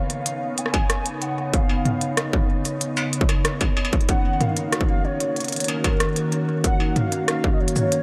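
Cerebral and intricate, this IDM excerpt in Eb minor moves at 94 BPM in a straight 4/4, with a glassy, ethereal FM pad sustaining Db7 then Ebm7 chords up front beneath a warbling, nostalgic lead melody carrying vibrato and portamento, both thickened by ensemble chorus. An industrial kit of crisp hats, rim click, shaker, struck metal and toms sits forward alongside a distorted electronic kick that enters at 0.7 seconds, while a woody, hollow kalimba joins at 4.1 seconds with ringing arpeggios in the background. The dreamy mix is soaked in a cathedral reverb with a 5.6-second tail.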